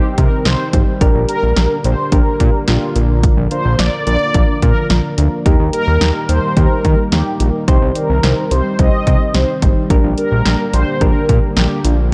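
A mellow, dark synth brass melody opens this wistful yet upbeat synth-pop excerpt, carried on chorus, phaser and a slapback echo, alongside soft, round electric-piano-like synth keys that share the chorus and phaser, vintage string-machine cellos sustaining full chords in the background, and a barely audible downlifter that lasts until 1.0 s. At 0.2 s a fat, detuned sawtooth bass and a punchy, dry analog drum machine of kick, snare and hi-hat arrive up front, giving the track its drive in a straight 4/4. The brass stays brassy and sustained with a filter sweep, while the gentle keys decay after each fast attack and the cellos swell in slowly beneath them, thickened by ensemble chorus and a sub octave. The harmony moves through Cm, Gm/Bb, Bb and Eb before circling back to Cm and Gm/Bb. Light reverb and a dark, warm production round out this short, continuous passage cut from a longer piece.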